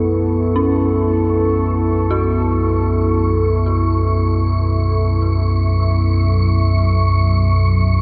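In free time, this cavernous, ominous dark ambient drone, cut from a longer piece, sets a deep rumbling drone with its own reverb and subtle chorus up front beside a moody, detuned sawtooth pad with chorus that fades out across the 8 seconds, while a breathy, wind-like tuned noise texture fades in high above and an eerie, inharmonic FM bell with chorus, tremolo and delay arpeggiates in the background from 0.6 s, all within a vast, echoing space.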